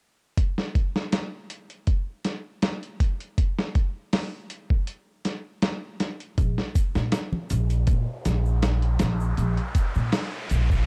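Trip hop at 80 BPM with a light swing, smoky and cinematic, built on a gritty, overdriven sampler-style drum kit with a thumpy kick and medium-tuned snare, up front in a dark, dry production from 0.4 seconds. At 6.4 seconds a woody, pizzicato upright bass enters alongside egg shaker and congas, the bass sitting up front between Bb1 and Bb2. From 7.4 seconds a faint electronic riser builds beneath them through the end of this cut from a longer piece.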